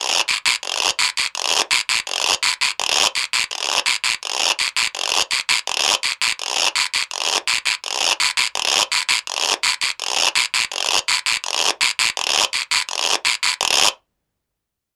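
A raspy, acoustic guiro sits close, dry and up front in this sunny, danceable Latin fragment, playing in a straight 4/4 feel from 0.3 to 13.7 seconds and captured with the intimate, little-reverb sound of a 1970s-style studio session.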